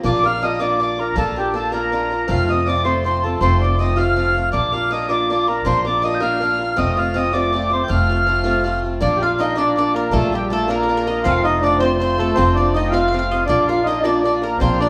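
Lively and cheerful, this short Celtic folk jig in 6/8 sets a reedy, rich accordion melody up front over a dark, boxy swing-style picked acoustic guitar and a woody, growly pizzicato upright bass, with a hollow, chiffy tin whistle adding a background second line and a round, double-strung mandolin joining at 9.0 seconds, all heard as a band playing live together in a reverberant large studio room.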